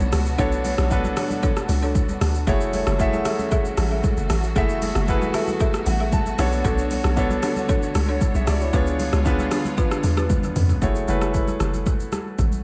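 Amapiano at 115 BPM in F# minor with a hypnotic, deep mood: a hollow, bouncy log drum bass anchors the low end while an overdriven deep house kit with a deep kick and metallic hats sits up front alongside a warm grand piano that trails dub echoes and plays a fill at 5.6 seconds. Lush bowed strings with vibrato pump in the background until 10.8 seconds, woody marimba stabs and soft-handed congas add rustic texture, and a drum fill at 10.3 seconds leads into a new section of this echo-heavy excerpt.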